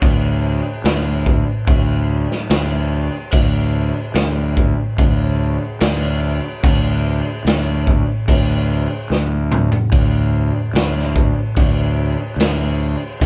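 Hypnotic and sludgy, this short excerpt of stoner and doom metal crawls along at 73 BPM in a straight 4/4. A fingered electric bass carries the low end from start to finish, its tone overdriven into a growly fuzz that sits up front around D2. A raw garage drum kit plays throughout with boomy kick, a medium-tuned snare, toms and crash cymbal, its sound gritty and saturated with a rolled-off top. The kit's small room gives it a pumping feel, while a drum fill at 9.1 seconds briefly breaks up the steady march. Captured as a band playing live in one room with little reverb, the recording feels close, heavy and immediate.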